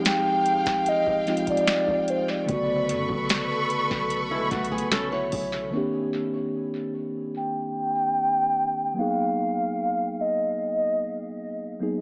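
Moody and longing, this contemporary R&B excerpt at 74 BPM sets a hollow, woody clarinet-like synth lead with chorus, vibrato and tape echo over a mellow tine electric piano, lush bowed strings, a deep 808-style bass, a booming analog drum machine with crisp snare and metallic hats, and a brief fingerpicked flamenco guitar from 4.3 seconds. The drums drop out at 5.5 seconds and the strings and bass at 5.7 seconds, as the echo-heavy, small-speaker mix moves through Fm9, Bm9, Cm9 and Abm9 in a moderate spring reverb.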